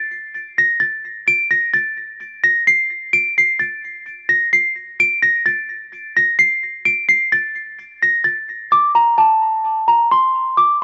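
This hip hop excerpt moves at 129 BPM in 4/4 with a half-time feel, setting a hard-hitting, menacing mood. A small celesta carries the whole passage alone, from the start to 10.8 seconds, ringing high between A5 and D7. Its bell-like, delicate tone, struck by hard felt hammers, sits up front, and the sweetness of the instrument plays against the dark intent of the track. A low-pass filter and tape echo shade the celesta's sound. The recording is dry and gritty, with a hardware character, and a new section arrives at 8.7 seconds before the cut.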